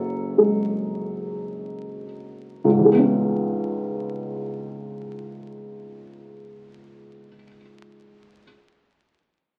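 Neoclassical minimalist piano in C# minor, intimate and melancholic, drifts in a rubato 3/4 at about 50-56 BPM as a brief fragment of a longer piece: a dark, woody, boxy upright piano with short sustain plays solo and up front from F#1 to A4, slowing over an F#madd9 chord before settling on C#m7 at 2.6 s, all heard through a moderate large-studio reverb and the crackle of a very old 78 rpm record.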